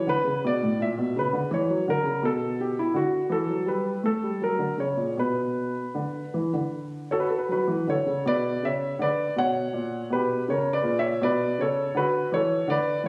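Captured on a phone in a recital hall with moderate reverb, then given added studio reverb and compression, this short fragment of a baroque-style classical suite movement in B minor features a solo grand piano, warm, present and up front with long sustain, spanning A2 to F#5 in a serene, dance-like performance at 80 BPM in 4/4 with rubato and uneven beats, its harmony moving from a rootless F#7/A# through Bm, Gadd9 and F# before a second section from 8.3 seconds brings F#add11/A# and a return to Bm.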